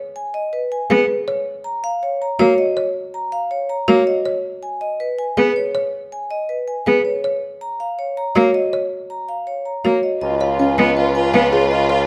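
This minimalist classical pattern piece opens with a woody, rustic folk marimba spinning arpeggios in a dry, up-front sound, joined at 0.2 s by a metallic, ringing vibraphone carrying the melody with its motor off. A bowed solo cello with smooth vibrato enters at 0.9 s as accompaniment, sitting prominently in the mix and moving between G#m and F# chords at a driving 161 BPM in straight 4/4. The mood is urgent and hypnotic, the repeating patterns held in a moderate recital hall reverb captured by close, detailed microphones. At 10.2 s the harmony shifts to C#7 as three new voices arrive: a clear, distant soprano saxophone with soft attack adds a second line, a lush studio string section lays down sustained chords, and a warm solo bassoon with light vibrato anchors the bass. The recording is cut from a longer piece, stopping just after 12 seconds.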